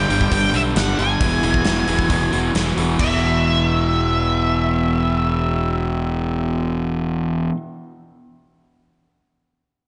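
Sunny and driving, this classic rock excerpt moves at 134 BPM in a straight 4/4, with chords shifting from G to E at 1.2 seconds. A dark, fuzzy octave-fuzz lead guitar carries the melody with slapback and tape echo, over riffs from a bright, compressed overdriven electric guitar with spring reverb up front and a hollow-bodied overdriven semi-hollow guitar in the background, while a growly fuzz bass sits forward and a very quiet jumbo acoustic guitar with fresh strings and finger squeak picks underneath. A gated 80s drum kit with a punchy kick and bright cymbals plays only until 3.1 seconds, all within a big arena sound with concert-hall reverb and a dulled top end.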